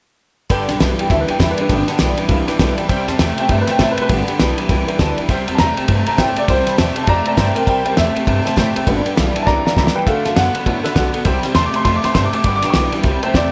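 A swung 4/4 groove drives this rowdy, retro rockabilly cut from a longer piece, with a cloth-damped, thuddy drum kit up front, its fat snare, tight kick and dark ride cymbal breaking into a fill at 9.5 seconds, over a growly pizzicato upright bass. A twangy, scooped electric guitar at the edge of break-up plays the riff through analog chorus, while a bright picked steel-string acoustic guitar with finger squeak sits in the background beside a woody upright piano comping in short, mellow notes. From 1.0 seconds a second dark upright piano carries the melody with long sustain further back, all set in light studio reverb.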